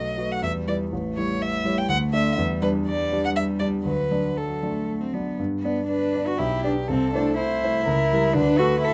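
Cheerful and graceful, this short excerpt from a quick classical-period movement for piano trio moves in triple metre with a flexible, rubato feel, and its opening phrase is restated from 5.4 seconds. Up front, a single bowed violin carries the melody with vibrato, portamento and a soft, expressive attack, while an intimate cello plays a second line with light vibrato and an airy, sul tasto bow. A clear, slightly worn concert grand anchors the accompaniment with deep bass, all captured by close, detailed microphones in light reverb.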